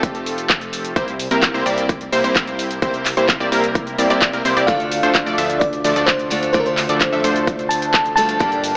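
Uplifting and anthemic, this festival progressive house passage at 129 BPM drives forward on a punchy electronic kick and a big-room dance drum kit of handclaps, metallic hi-hats, ride cymbal and shaker, while a fat, detuned analog bass, an up-front, airy supersaw stab riff with a filter sweep, and a lush unison pluck arpeggiating in the background all pump with sidechain and the two synths trail digital delay over Fadd9 and C7 chords. At 4.7 s, as the harmony shifts to Dm, a sparkling, bell-like FM electric piano melody with chorus and vintage 12-bit sampler grit enters alongside a picked steel-string acoustic guitar accompaniment, all set in a lush hall reverb with an AM radio sound.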